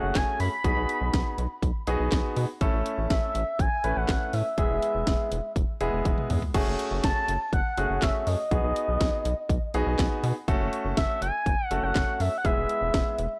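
Synth-pop with a nocturnal, driving mood, this excerpt moves in a straight four-beat pulse across two passes of the same section. A smooth, expressive synth lead carries the melody up front, its dark sawtooth-and-triangle tone shaped by vibrato, a moving notch, chorus and analog delay. Beneath it, an intimate concert grand piano plays polished accompaniment with long sustain and audible action noise, while a rubbery, hollow square bass with a nasal filter pluck bounces along in the low end. The electronic house drum kit enters at 0.2 s with a punchy kick, cracking snare, bright hats, handclaps, toms and crash, and a drum fill at 6.1 s leads into the second pass. The chords move from F#madd9 through B6 and A to E, with F#m taking the place of A on the second pass, and the excerpt has a gritty, cassette-tinged hardware character wrapped in digital ambience.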